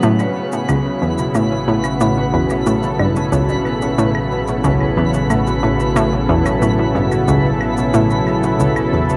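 A lush unison pad sits up front, holding thick, warbling sustained chords with a bright, vintage, detuned sawtooth character, treated with chorus and shimmer reverb, in this short cut from a longer piece of ambient, sequencer-driven space music at 91 BPM in 4/4. Beneath it, an analog pluck repeats a low riff with a round, nasal, wave-folded bite and fast attack, colored by chorus, delay and shimmer reverb. A concert harp, mellow and ringing in the background, plays fingerpicked arpeggios through delay and shimmer reverb, while a twinkling granular texture adds a sparkling, octave-up shimmer on a single high note. A fat, saturated analog bass holds a low A and fades in across the whole 9.2 seconds, and a quiet electronic shaker and claves keep time with a touch of delay. A wet plate reverb surrounds the mix, giving the straight-feel passage in A a cosmic, expansive mood.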